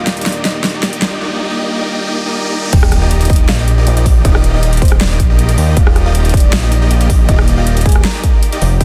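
Dry and dense, this heavily limited modern master opens on a bright, euphoric future bass passage at 158 BPM in a half-time 4/4 feel, centred on Eb major with an Ebmaj7 chord at the start. A huge, lush supersaw riff built from detuned unison sawtooth voices carries the harmony throughout, pumping against the sidechain and trailed by digital delay. Above it a round, tine-like synth pluck with FM colour, a sub octave and analog chorus sits in the background with the melody, while a bell-like, clean electric piano plays accompaniment only until 2.8 seconds, and a very quiet, vibrato-rich symphonic string section holds sustained chords underneath. The build-up features a drum fill from the big-room kit with its huge snare and metallic hats, joined by a background riser at 0.6 seconds that leads into an impact. At the drop at 2.7 seconds, a punchy, up-front electronic kick and a fat, nasal analog bass of saturated sawtooth and square waves enter, the bass pumping with the sidechain as the passage drives on.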